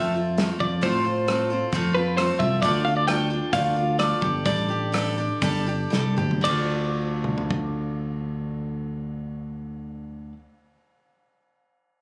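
A clean, compressed twelve-string electric guitar sings the melody over a bright, boxy parlour acoustic guitar and an up-front fingered electric bass in this dusty, reflective slice of folk and heartland rock, with a natural country drum kit of dark cymbals and a punchy kick joining at 0.4 seconds. The pace slows from 2.6 seconds, and a drum fill leads into a new section before the drums stop at 7.6 seconds, leaving the strings to ring on. Captured on a phone in the room, the sound carries a club's reverb and a squeezed, compressed feel.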